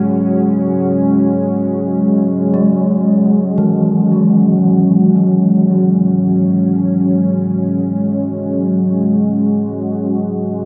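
In free time, this dark ambient drone sits on a single Gbsus2 chord, with a moody, detuned sawtooth pad holding sustained chords up front through chorus and reverb while an ominous, wave-folded drone rumbles on Gb3 in the background from 0.1 seconds. A gamelan-type bronze metallophone, struck with a wooden mallet, rings out soft arpeggios with shimmering beats from its paired tuning, trailed by a diffuse delay until 9.9 seconds. Cut from a longer piece, it feels cavernous and desolate, bathed in a wet cathedral reverb and a dark, warm production.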